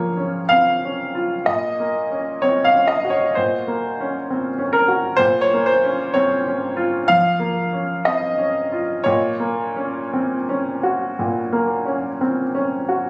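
Neoclassical minimalist piano in an intimate, reflective mood, moving at a slow, rubato 56-65 BPM in 4/4 and drifting between Bbm and Gb/Bb. A solo upright piano, woody and slightly detuned with a short sustain, sits up front and spans Bb2 to F5 across the full 13.1 seconds. The phone-in-the-room capture carries a light reverb, and the clip is cut from a longer piece.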